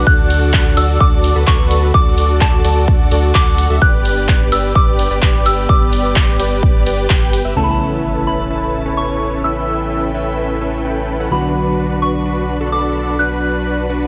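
An anthemic, triumphant festival progressive house passage opens mid-drop: a soft, warbling FM synth bell with vintage sampler grit and delay carries the melody over a huge, detuned supersaw riff, a deep, saturated sub bass and dark, woody bowed strings sitting in the background, with the riff, bass and strings pumping under the sidechain. A punchy, up-front electronic kick and a big-room kit of handclaps, hi-hat and ride drive the first half until about 7.4 s. At 7.6 s an impact and a background sub drop mark the change, a filter sweeps across the strings, and a clean, dark hollow-body electric guitar with ensemble chorus joins the accompaniment in a lightly reverberant digital space.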